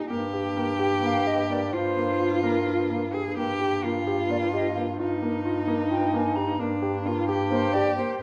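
Driven by a straight, uneven 7/8 pulse at 259 BPM in eighths, this restless, hypnotic fragment of contemporary chamber music sits in G phrygian, tuned to A4 = 442 Hz, and circles between Gm, a rootless Abmaj13/G and Ebsus2/G. A clear bass clarinet holds a steady G2 bass line up front with vibrato and a vintage, jazz-style tone. A dark, mellow concert grand spins deep arpeggios, while a rich, bowed cello played by a single player, with a focused, smooth top, carries a second line from 0.0 seconds. From 1.0 seconds a bright, airy wooden flute enters with a close, tongued, straight-toned melody, all set in a recital hall's wet reverb with a dusky production.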